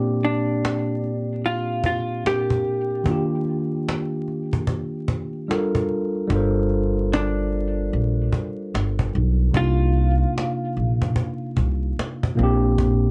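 A dark, compressed hollow-body jazz guitar picks a clean, low-passed melody over a clean tine electric piano through a combo amp, both bathed in plate reverb, while a woody cajon with faint snares and 12-bit sampler grit keeps a swung 74 BPM lo-fi hip hop groove in G minor, and a growly pizzicato upright bass joins at 6.3 s beneath hazy, melancholic chords moving from Bb6 through Ebmaj9, Gm9, Gm11 and Cm11 back to Bb6, all in a short cut from a longer piece with vinyl crackle and light reverb.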